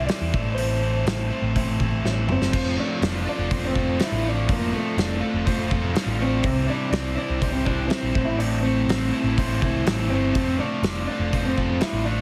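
Wistful yet carefree, this indie rock excerpt moves at an easy, straight four-four stride. A dark, slightly broken-up electric guitar through a small old amp carries the melody with analog delay, while a biting overdriven guitar drives a riff beneath it and a round, punchy picked bass anchors the low end. A loose acoustic drum kit with a medium-tuned snare, tight kick and pumping room sound rolls through a fill that ends at 2.5 seconds, where a second overdriven guitar enters with its own riff, touched by subtle chorus and delay. The harmony drifts from A minor to F6, C, and back to A minor and F6. The sound is dry and heavily compressed, with a multiband, radio-style squeeze.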